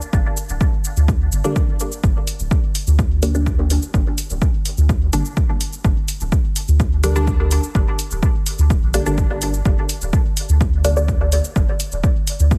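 A hazy, cavernous dub techno groove opens with an overdriven electronic shaker and hi-hat, joined almost at once by an up-front, punchy electronic kick drum and a deep, round sub bass with sidechain pumping. The piece is set at 126 BPM in a straight 4/4 and sits on a G minor chord. At 1.4 seconds a muted, full-bodied chord stab arrives, its sawtooth tone filtered into a dark pluck with a phaser, sidechain pumping and a dub echo that trails into the haze. The stab drops out at 11.1 seconds while the drums and bass carry on to the close of this fragment cut from a longer track. The whole mix carries a digital ambience and a heavily compressed, radio-like sound.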